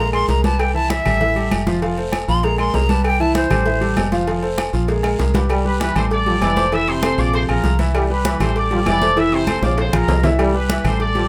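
A joyful, sunny salsa excerpt in C major at 196 BPM opens with an airy silver concert flute singing a crisp, slightly unsteady vibrato melody until 4.2 seconds, over a clear, intimate grand piano with audible action noise and a dark, round, punchy fingered electric bass up front. Close, dry congas sit in a busy percussion bed alongside ringing agogo bells and timbales, tight high-tuned cowbell and bongos, a raspy guiro and very quiet woody claves, with drum fills marking the phrase turns. From 5.5 seconds a mellow, roomy trombone section takes a second line, and the lead passes at 5.7 seconds to a vintage-toned trumpet section playing tight and upfront with vibrato, all in a moderate studio reverb.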